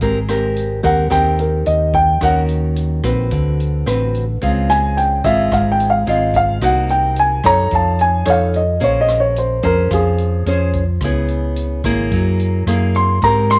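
A straight 4/4 bossa nova groove at 109 BPM in Ab major is set by a natural-sounding drum kit of hi-hat, punchy kick and rim click, under a round, amped hollow-body electric bass and a bright, fingerpicked nylon-string guitar comping through lush changes such as Abmaj9, Faug7 and Gb9. From 0.8 s a dark, mellow grand piano with short sustain carries the melody up front, giving this relaxed, sophisticated passage from a longer piece its focus. The sound sits in a small room with light reverb.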